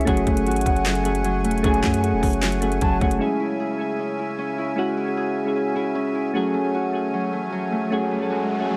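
Up-front soft, round electric-piano-like synth keys with chorus accompany this brooding, eerie half-time trap excerpt in C# minor at 153 BPM, joined by reedy accordion chords, fingerpicked Celtic harp arpeggios with tape echo, an airy background jazz flute, a deep sine 808-style bass and a trap kit of hard-clipped kick, sharp snare, metallic hats and handclaps. Flute, bass and kit all drop out at 3.2 seconds, leaving keys, accordion and harp until a background riser enters at 7.4 seconds, all in a dry, gritty, saturated sound.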